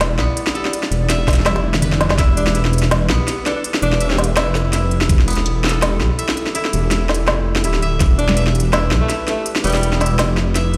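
Half-time drum and bass at 165 BPM in E phrygian, this tense, cinematic excerpt sits on an E minor chord, with a gentle swing on the sixteenths. A deep, rumbling detuned saw bass sits up front, saturated and dark, while a dark analog pad holds sustained chords in the background with chorus and sidechain pumping. A bright, woody koto, played with fingerpicks, spins arpeggios throughout, roughened by vintage 12-bit sampler grit and trailed by delay. The organic electronic drum kit brings a woody snare, crisp hats and toms with a tape-warm, small-room character, joined at 1.3 s by a knocking, overdriven electronic kick and a short drum fill. A clear, distant alto saxophone with vibrato plays jazz-style solo phrases from 2.4 s and again from 8.2 s, carrying the same sampler grit and delay. The whole sounds as if played on a big sound system in a bare stone room.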